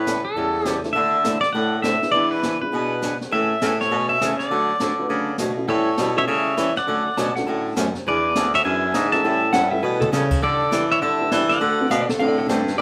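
Opening at 0.0 s, a twangy, compressed pedal steel guitar carries the melody with fingerpicked slides and volume swells over a warm, subtone baritone saxophone playing the bass line with vibrato, while a bright, boxy picked acoustic guitar, a distant brushed jazz drum kit with a high-tuned snare and boomy kick, and a mellow, woody upright piano in the background fill out this down-home, swinging western swing excerpt in D major at 203 BPM, with a clean, dark lap steel guitar adding a second line from 7.2 s and a drum fill at 9.8 s, all captured as a band playing live in one room with moderate reverb.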